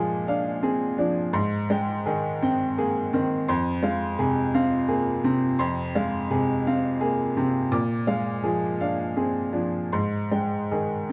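In a rubato 3/4 at 84 BPM, this melancholic, intimate neoclassical minimalist piece in F dorian, tuned to A4 = 439 Hz, is carried by a solo upright piano that sounds woody and brilliant, placed up front and ranging from F2 to D6. Over 11.1 seconds cut from a longer work, the harmony moves from Bb7 through Abmaj7 to a long Fm before returning to Bb7 and Abmaj7. A moderate small-room reverb and a dark production give the close, open piano tone a soft halo.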